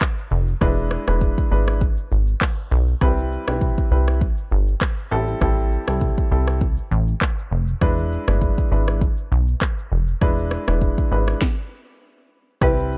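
A punchy, plucky analog bass sits up front in this smooth, hypnotic afrobeats excerpt, its sawtooth and square-wave tone shaped by a fast-attack filter pluck, a moving notch and a decaying tail that keep it funky and evolving in the low register. Around it, an electronic afro-pop drum kit with a deep kick, a sharp snare, rim clicks, shaker and handclaps drives a 100 BPM groove in 4/4 with a light swing on the sixteenths. A warm baby grand piano fills the middle with present chords, moving from E7 to Cmaj7, Am7 and back to E7. The music breaks off in a stop at 11.4 seconds, and at 12.6 seconds a woody, buzzing marimba struck with medium mallets sounds a single B4 in the background. The production is dark, set in a small room ambience.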